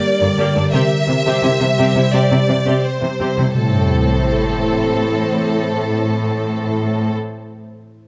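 Set in a moderate scoring-stage reverb, this short cinematic cue cut from a longer piece feels vast and relentless in a straight 4/4. A glassy FM pad, ethereal with a slow attack, long release, ensemble chorus and its own built-in reverb, sustains chords from the first moment while a lush, focused violin section carries the melody with vibrato. Just after, at 0.2 s, a smooth viola section slips into the background as accompaniment, and a rich cello section sits up front holding the bass. The harmony moves from Gm to C, then lands on Am as an impact marks the new section at 3.5 s. A huge, dark sub drop arrives at 3.6 s and rolls beneath the bowed strings, lingering briefly after they stop.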